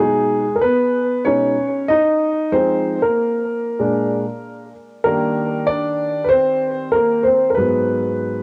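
Nocturnal and smoky, this short hip hop fragment is cut from a longer piece and moves at 95 BPM in 4/4 with a lazy swing on the sixteenths. A lone upright piano carries the whole 8.4 seconds, spanning G#2 to D#5 with a woody tone and long sustain, sitting up front in the mix. The part is colored by cassette tape character and a tape echo, giving the keys a lo-fi, late-night haze. The harmony drifts from B69 through Fm7, A#7 and D#maj7 before settling on G#m7 near 7.6 seconds. Light reverb and the home cassette recording lend the whole fragment an intimate, bedroom feel.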